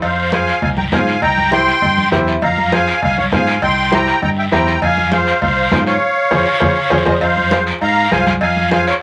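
Cumbia at a driving 200 BPM in F harmonic minor, this fiery excerpt is led by a reedy, shimmering musette accordion up front, carrying the melody between C5 and C6 over a bright fingered electric bass, woody upright piano accompaniment entering at 0.3 s, thick-skinned congas, a raspy guiro, and ringing cowbell and timbales set in the background. The harmony alternates between Fm and C7, with a piano fill at 2.0 s, then a band accent from 6.0 to 7.2 s and a drum fill from 6.3 s leading into a new section. A club reverb and vinyl crackle give the sound a vintage, lived-in character, and it is cut from a longer piece.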